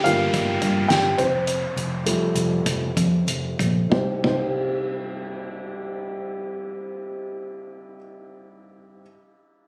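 A dark, woody upright piano sits up front in this earnest, dramatic piano-driven pop excerpt in C minor at 93-108 BPM, slowing over the opening 3.9 seconds through Gm and Fadd9 to Cm as an electronic downlifter sounds, while a round, foam-muted vintage electric bass holds the low end until 8.0 seconds and a soft-mallet drum kit with a fat snare and punchy kick plays in a big room until 4.4 seconds, the recording made on a phone in the room with light studio reverb and compression.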